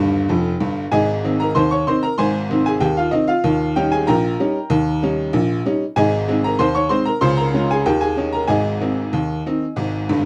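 A solo tack piano, metallic and jangly with a boxy, percussive attack and short sustain, sits up front in this jaunty ragtime excerpt in Ab major at 95 BPM in a straight 2/4. A honky-tonk fill opens the passage and returns at 10.1 seconds, while the harmony moves through Eb, Ab, Eb7 and Db before resolving to Ab. Light reverb and a dark, warm production frame the lively playing, which spans a range from F1 to Db6.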